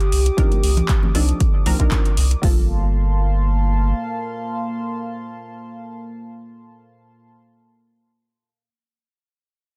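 Deep house at 117 BPM in G minor, moody and hypnotic, with a gentle 16th-note swing and a short drop opening this cut from a longer piece. A mellow, horn-like synth lead with chorus, vibrato and tape echo sings a brief G4 melody over a smooth analog pad and muted, filtered dub chord stabs, both breathing with sidechain pumping as the harmony moves from Cm11 to Gm11 at 2.4 seconds. A round, deep analog bass sits up front from 0.1 seconds, dark and slightly nasal, also pumping against the beat. Two layers of overdriven electronic drums carry punchy kick, metallic hats and handclaps, while ringing, close acoustic congas sit in the background. The mix is dry, with little reverb, and the master is dense and heavily limited.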